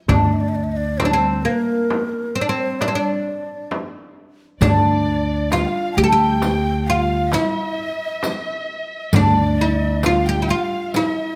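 Heard through a moderate recital hall reverb, this hypnotic, melancholic excerpt of Arabic maqam ensemble music in D maqam bayati moves at 133 BPM in 10/8, with a woody, fretless oud carrying the melody up front over a growly pizzicato upright bass, a crisp metal-shell darbuka and a deep frame drum in the background, while a breathy low ney with vibrato and lifted highs traces a second line, joined at 4.6 s by a lush, dark studio violin section with portamento and a riq of bright jingles.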